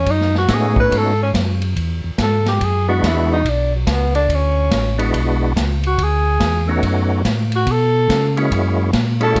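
Soul jazz organ trio in a bluesy, greasy mood, swinging at 142 BPM in 4/4 with a loose eighth-note lilt, heard in a short cut from a longer piece. A mellow tenor saxophone takes the solo throughout, its soft attack and vibrato sitting up front yet carrying a roomy, distant air. Beneath it, a round, dark tonewheel organ handles the bass line with light overdrive and a slow rotary speaker. A second organ enters at 0.5 seconds with a fat, percussive voice, key click and chorus vibrato through the same slow rotary. The big-band drum kit sits further back in a studio room, with dark cymbals on ride and hi-hat, a medium-tuned snare and a punchy kick. The changes move from B9 to E9, return to B9 at 6.8 seconds, and reach F#9 at 8.5 seconds, all in a dry sound with little reverb.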